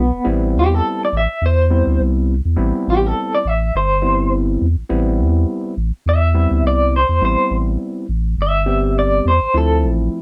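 A dry, close 1970s-style studio sound frames this brooding, soulful straight-eighth soul blues fragment in A minor at 104 BPM, with a light swing on the sixteenths. A twangy, slightly broken-up electric guitar through a small old amp carries the picked melody with tremolo and slapback echo, over a deep, round sub bass and a barky, gritty overdriven tine electric piano that adds phaser-tinged accompaniment from 0.2 seconds. The harmony sits on Am7 before moving to Dm7 at 9.5 seconds, shortly before the cut ends.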